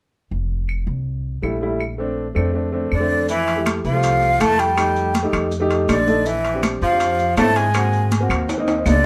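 Through a moderate club reverb and lossy compression artefacts, this lively, sophisticated Afro-Cuban jazz fragment in F major at 162 BPM opens on a dark, thumpy gut-string upright bass plucked up front with woody claves behind, adds a warm, polished upright piano at 1.4 s, then at 2.9 s brings in a breathy, mellow silver concert flute with vibrato and a crisp attack over a distant, roomy baritone saxophone with scooped notes, before bright, damped congas, grainy maracas and ringing metal-shell timbales fill out the groove toward a drum fill at 8.5 s.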